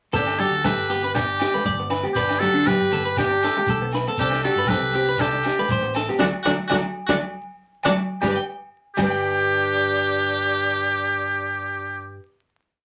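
A carefree, sunny highlife guitar band piece in G major moves at 119 BPM in a straight 4/4, opening on G and passing through Csus2 and D before settling on a final G chord at 8.2 seconds. Up front, a trumpet with a metal mute carries a motif-based melody of hook phrases, its buzzy, thin tone marked by light vibrato, scooped notes and forceful jazz phrasing, while a breathy alto saxophone sits in the background with a smooth-topped harmony line mostly in thirds. Two clean electric guitars play ostinatos: a bright, twangy, picked part lays down the accompaniment, while a darker, fingered part in the background spins arpeggios from D4 to G5 and rings on to the end. A fretless electric bass adds an amped, syncopated figure, and the congas, struck with hard hands, bring a thick-skinned, saturated pulse alongside a grainy shekere, ringing agogo bells and a dry compact cocktail drum kit with a high-tuned snare and punchy kick. 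The band hits an accent from 6.2 seconds with a drum fill at 7.2, after which the percussion and drums stop at 9.1 seconds, leaving horns, guitar and bass to hold the final chord, all set in a wet studio ambience with a layer of vinyl crackle.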